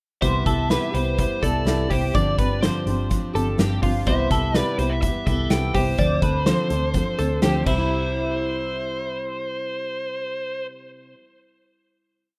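A brisk indie backbeat at 125 BPM, with a punchy kick and medium-tuned snare from a loose drum kit, drives this breezy, bright jangly indie pop piece in C major, where a dark, foam-muted electric bass plays driving eighth notes, a full-bodied fingerpicked steel-string acoustic guitar strums barre chord shapes, a compressed twelve-string electric guitar rings out clean arpeggios through analog chorus, and a distorted high-gain lead guitar with delay states motif-based call phrases, all within a rough home demo mix in a small room, with the drums stopping at 7.8 seconds before a final hit at 7.9 seconds that the acoustic guitar carries on to 11.3 seconds.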